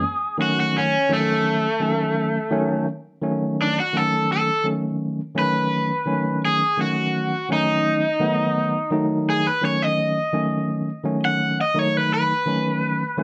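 Blues in B mixolydian at a laid-back 84 BPM, this swaggering fragment from a longer piece features a bright, overdriven semi-hollow guitar playing a picked solo up front throughout, over a clean tine electric piano heard through its built-in speakers that accompanies from the start and adds a fill at 12.8 seconds, as the harmony moves from D#m7b5 to B9 at 2.9 seconds inside a moderate club reverb.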